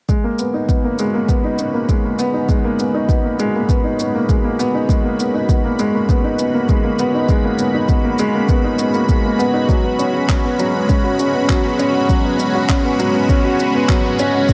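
Melancholic and intimate, this excerpt of piano and strings electronica builds throughout its 14.5 seconds as a woody, up-front upright piano riff sits over a thick, detuned sawtooth pad of sustained chords moving from G#madd9 to Bsus2 at 9.7 seconds, the pad colored by chorus, phaser and sidechain pumping and the piano by digital delay, while a deep, overdriven electronic kick and quieter overdriven shaker and handclaps, re-recorded in a small room, drive it forward inside a lush hall reverb.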